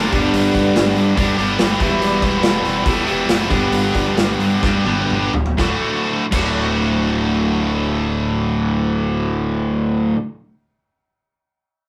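A sunny, swaggering classic rock excerpt in D major opens with a mellow tonewheel organ solo on slow rotary speaker and chorus vibrato, over an up-front, double-tracked overdriven guitar riff and a dark, fuzzy fingered bass, moving through G, Em and G at 121-144 BPM in a straight 4/4. The tempo slows down from 2.0 seconds, and the big acoustic drum kit, with its punchy kick and medium-tuned snare, plays a fill at 4.6 seconds. The organ drops out at 4.4 seconds, and the kit stops at 6.5 seconds, leaving the riff and bass on D in a rough rehearsal-room sound with a short, wet small-room reverb.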